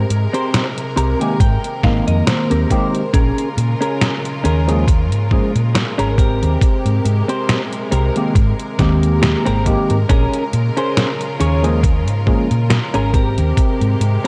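Cassette-tape haze and light reverb wrap this melancholic vaporwave excerpt, where a thumpy, up-front electronic kick and a detuned 8-bit drum machine with a fat, gated-reverb snare and hi-hat sit under a round, dark hollow-body bass, while a clean, compressed electric guitar riff through analog chorus and delay opens with a fill from 0.5 to 3.1 seconds, a gritty overdriven tine electric piano drifts in on lush chorus, and a bright, intensely bowed symphonic string section sustains chords swaying between Abmaj9 and Bbm7.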